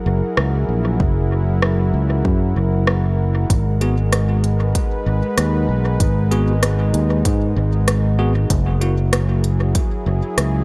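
Hazy and deep, this ambient dub fragment, cut from a longer piece, rests on a smooth, detuned sawtooth analog pad with chorus, holding sustained chords from the opening while an up-front fingered electric bass sits beneath it. Electronic drums with smooth hi-hats and rim clicks carry overdrive, small room ambience and dub echo, joined from 1.0 seconds by a deep, overdriven electronic kick. At 3.8 seconds a bright, bell-like tine electric piano adds clean stabs trailed by dub echo, over a light reverb and chords moving from F#7 to G#m7 and back.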